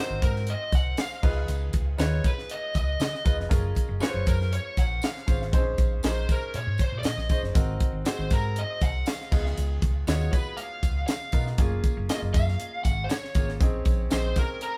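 A tight, dry funk kit with a high-tuned snare and tight kick sits up front at 119 BPM in straight 4/4, driving this polished, bittersweet 1980s jazz-funk pop excerpt, where a round, dark hollow-body bass, a clear, intimate grand piano with audible action noise, a very quiet jingly tambourine and an overdriven lead guitar with digital delay carrying the melody move through Ab9, Db9, Gbmaj9 and Bbm11 chords, all heard as a band playing live in one room with moderate studio reverb.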